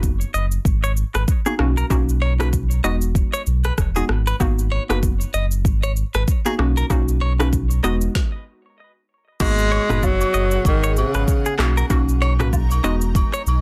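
Sultry and mellow, this afrobeats excerpt in G# minor moves at 96 BPM with a swung sixteenth-note feel, built on a deep, full sub bass with octave, an up-front electronic drum kit with a deep kick and woody, softly clipped snare, and a hollow, bouncy square-wave pluck treated with chorus and plate reverb, while a bright, twangy clean electric guitar riff runs through phaser and tape echo over G#m7, Bmaj7 and Emaj7 chords. After a stop at 8.2 seconds, the second section at 9.4 seconds brings in agogo bells and woodblock in the background and a breathy tenor saxophone solo with vibrato and scooped notes, up front in tape echo and plate reverb. From 10.3 seconds a cloudy, evolving granular pad adds blurred sustained chords in the background.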